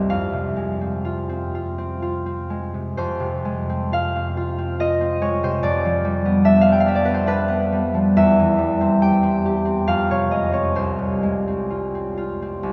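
A solo concert harp opens on an F minor chord, its bright, ringing tone placed up front in this gentle classical fragment cut from a longer piece. The mood is wistful, and the playing moves with a rubato feel in 3/4 at roughly 60-74 BPM, with the fingerpicked strings spanning from low C2 up to G5. A vast cathedral reverb surrounds the instrument, with a long decay that lets each note hang in the air, and the harp is heard from further back in the room. The harmony drifts from F minor to G7 over F at 5.6 seconds, then through C over E before settling back onto F minor. The passage closes on F minor over C at 10.8 seconds, with the harp playing until 12.7 seconds.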